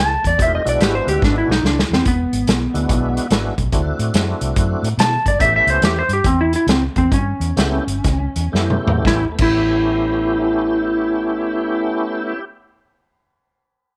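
Swaggering and laid-back, this electric blues shuffle in A mixolydian rolls along in 4/4 with a 65% swing on the eighths, its tempo sitting between 114 and 144 BPM and slowing down from 5.4 to 9.0 seconds. An up-front electric slide guitar carries the melody with a compressed, slightly broken-up tone. A foam-muted fingered electric bass sits underneath, sounding dark, round and amped. A vintage acoustic drum kit in a small, pumping room brings a punchy kick, a medium-tuned snare, dark cymbals and toms, adds a couple of fills, and stops at 9.5 seconds. A lightly overdriven tonewheel organ fills in full, warm chords through chorus vibrato and a slow rotary speaker, moving over E9, D9 and A9 within light studio reverb in this short cut from a longer piece.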